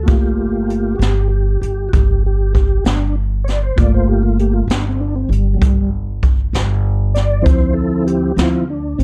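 In a straight 12/8 slow-blues sway, this soulful, mournful passage cut from a longer piece puts a soft, flute-like tonewheel organ up front, its sustained chords turning through a slow rotary speaker and chorus vibrato as it takes the solo from Gm7 to Dm7 at 7.5 seconds, over a woody, thumpy gut-string upright bass played pizzicato and a jazz brush kit with a high-tuned snare and boomy kick that enters at 0.1 seconds, the whole passage set in light reverb within a dark, warm production.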